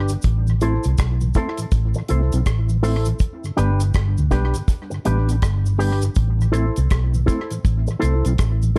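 Roots reggae in A minor at 81 BPM, this short cut from a longer piece has a meditative, laid-back feel, with a swung sixteenth-note lilt over a 4/4 pulse. A vintage muted fingered electric bass sits up front, dark, round and foam-muted, with an amped tone, while the deep reggae drum kit is dry with a tight kick, its kick, hi-hat and rim click touched by tape echo. An electric guitar run through an envelope filter adds clean, compressed accompaniment, thickened by lush chorus, dub echo and plate reverb. A mellow tonewheel organ supplies soft, flute-like accompaniment with audible key click, chorus vibrato, a stopped rotary speaker and tape echo. A faint cabasa adds a small-room texture in the background, and the harmony moves from Am to G at 3.2 seconds and back to Am at 6.2 seconds, all within a dark production with little reverb overall.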